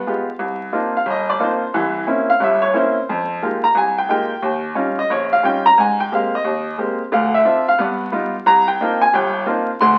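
A bright upright piano sits up front in this swinging, late-night jazz excerpt, its brilliant, woody tone carrying audible action noise as it comps through rich minor-key harmony, moving from Cm11 through Fm11 and Abmaj9 before resolving back to Cm11 at 8.5 seconds. The intimate playing is bathed in a wet studio reverb and heard through the crackle of a very old 78 rpm record, giving the fragment a worn, nocturnal glow.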